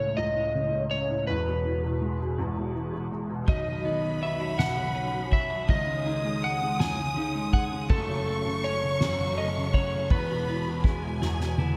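A tender, heartfelt pop ballad in E major and 6/8 at 54 BPM opens with a slightly broken-up electric slide guitar carrying the melody through delay, over a felt-muted upright piano that sounds intimate and up front, its action noise audible beneath a gentle chorus. At 3.5 seconds a lush, vibrato-rich violin section adds a high second line, a bright, twangy twelve-string electric guitar picks arpeggios in the background, and a soft-mallet drum kit with a boomy kick and fat snare joins. The dreamy mix is soaked in plate reverb, and the section closes with a drum fill at 11.2 seconds, cut from a longer piece.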